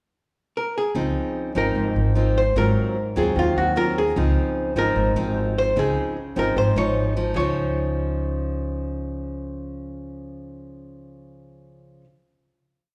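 Bossa nova with a sophisticated, relaxed mood, this short complete piece opens with a brief pickup before settling into a single section and closing on a held final chord from 7.4 seconds. A dark, clean hollow-body archtop guitar, picked and miked through an amplifier, carries the melody from 0.6 seconds in hook-like motif phrases. The upright bass is woody and plucked on steel strings, playing dotted root-and-fifth figures. The nylon-string guitar, fingerpicked in classical style on fresh strings, supplies the bossa nova accompaniment of thumb bass and syncopated plucked chords. Harmony moves from Dbmaj9 through Ab13 and back before resolving to Dbadd9. All three instruments sit up front, surrounded by the long, wet reverb of a church or concert hall.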